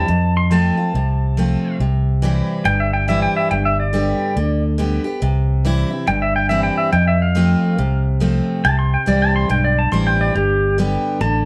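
A moderate studio reverb gives this short cut from a longer honky-tonk and classic country piece an open, polished sound, with all three instruments placed up front. The mood is sunny and nostalgic, with a swung eighth-note feel in four and a simple progression moving among F, C and G. A clean, twangy pedal steel guitar carries the melody as a solo for the full 11.5 seconds, played with fingerpicks and slide, shaped by volume swells and compression. Beneath it, a picked dreadnought acoustic guitar with fresh strings sounds bright and full-bodied, with an audible finger squeak. A fingered electric bass supplies a dark, round, amped low end.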